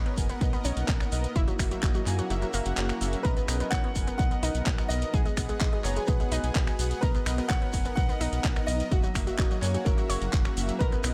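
Close and dry with little reverb, this hopeful, uplifting progressive house excerpt is built on a punchy, up-front electronic kick, which drops out from 2.3 to 3.2 seconds, and a round, deep analog bass pumping with sidechain, beneath a pop drum kit of finger snaps, handclaps and metallic hi-hats, plus a grainy shekere in the background. Nasal, wave-folded analog pluck arpeggios with chorus and digital delay sit alongside smooth, detuned supersaw stabs, while a shimmering, ethereal ambient pad holds sustained chords in the background. At 3.2 seconds a bright, worn grand piano melody enters with digital delay over the Bmaj7, F#7 and G#m7 changes.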